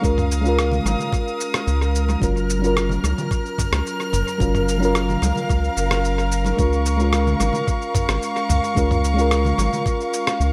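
An echo-heavy mix with light reverb gives this sunset chillout excerpt a soft, airy spaciousness, and its mood is blissful and sunny over a straight, easy 4/4. Up front sits a round, deep analog bass with a nasal, sine-like tone and tube saturation that gives it body. A mellow FM electric piano plays the accompaniment with a dark, decaying touch, thickened by chorus and analog delay and shaded by a low-pass filter sweep across the whole passage. Above it, a chamber string section holds intimate, sul tasto chords with light vibrato and a soft bowed attack. The rhythm comes from a gritty, compressed sampler-style soul kit of cabasa, rim click and toms treated with tape echo, anchored by a knocking electronic kick that stops at 10.0 s. Bright, damped congas with a thin, band-limited vintage sound enter in the background at 0.7 s.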